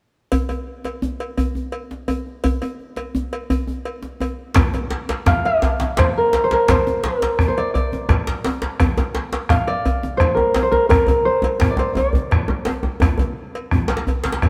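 West African traditional drum ensemble music in 12/8 with a driving, powerful feel, where a close, metallic cowbell and a deep djembe with metal rattles open this section before a second, tight and cracking djembe, a round bombo and soft-handed, low-tuned congas in the background join from around 4.5 seconds, and an up-front, thumb-plucked concert harp rings out from 5.3 seconds, the whole mix heard from further back in a room with moderate plate reverb.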